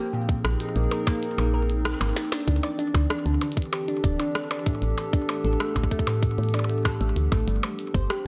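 IDM in D minor at 96 BPM, this short cut from a longer piece feels eerie and intricate, with a straight 4/4 pulse and tuning that sits slightly below standard pitch. A warbling, lo-fi pad built from detuned square and triangle tones holds sustained suspended chords under chorus and its own reverb, while a harp-like synth pluck ringing with a faint noise layer and filter sweep spins arpeggios through chorus, phaser and digital delay. Up front, a tight, tape-tinged electronic kick and a round, woody FM bass with a fast, decaying attack anchor the low end, and a glitchy kit of clicky hats, percussion blips, rim clicks and a tiny snare skitters more quietly in a small room with added delay. The kick drops out from 1.2 to 2.5 seconds, where a band accent lands just before a drum fill leads into the repeat of the opening section. The chords move from Bb9sus4 to D9sus4 at 2.5 seconds, then through A9sus4 to G9sus4, all set in a light digital ambience that keeps the mix hushed and nostalgic.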